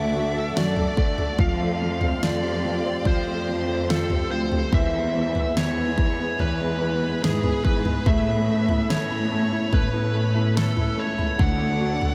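A straight 4/4 pulse at 72 BPM carries this hopeful, heartfelt pop ballad excerpt, where a smooth, overdriven electric lead guitar sings the melody over a clear concert grand piano, a full-bodied fingerpicked acoustic guitar's arpeggios, lush bowed strings in the background, a dark, woody cello section holding the bass, and a punchy, up-front pop drum kit that enters at 0.6 seconds, all soaked in a huge, dreamy reverb as the chords move from D through Fadd9, E and Aadd9 back to D.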